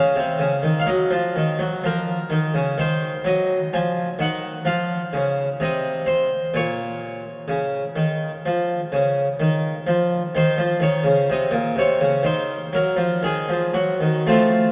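A classical, baroque-style suite movement for solo harpsichord, introspective and flowing at a rubato 64 BPM in 4/4, its airy, brilliant Flemish-style tone from three sets of strings sitting up front in a wet cathedral reverb with a 5.5-second decay as harmonies move from Ebm through Ebm69, F5 and Bbm to Cdim across this 14.7-second cut from a longer piece.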